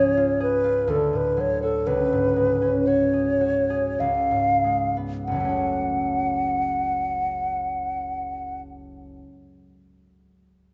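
Romantic classical music for flute and harp, a yearning, elegiac passage cut from a longer piece, moves in an unhurried, rubato triple time that slows through its first 5.3 seconds. The close-miked silver flute carries the melody with a mellow, hollow, pure tone, tongued notes and vibrato, and falls silent at 8.6 seconds. The fingerpicked harp rings beneath it in accompaniment until 9.2 seconds, both up front in a moderate recital-hall reverb with a softened top end.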